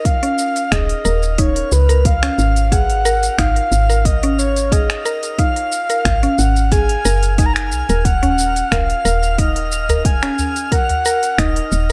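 Organic downtempo in Eb minor at 90 BPM, this short cut from a longer piece has a meditative, hypnotic pull over a straight 4/4 pulse. A breathy, flute-like synth lead carries the melody up front, soft-edged and sustained with vibrato, chorus and delay, while a mallet-like FM pluck spins round, mellow arpeggios beneath it, also touched with chorus and delay. In the background, a twinkling granular texture holds a high, sparkling shimmer on F6, bathed in its own reverb. A deep, layered electronic kick and an organic electronic kit of finger snaps, smooth hi-hat and shaker set the groove from 0.1 seconds, and a woody, dark FM bass sits up front from 0.7 seconds. At 8.2 seconds a close, dry udu adds deep acoustic percussion just after the harmony moves from Ab7(no3) to Ebm7, all within light reverb and digital ambience.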